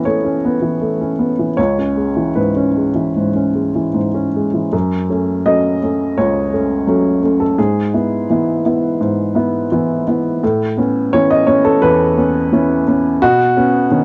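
An intimate, woody upright piano plays alone and up front, its action noise audible, in this tender, hopeful neoclassical minimalist fragment in 4/4, moving with rubato between 74 and 89 BPM and tuned to A4 = 439 Hz, opening on Aadd9 and C#m7 before shifting at 4.7 seconds through F#m, E/G# and a return of Aadd9 to a Badd9 at 13.2 seconds, captured as a home cassette recording with moderate booth ambience.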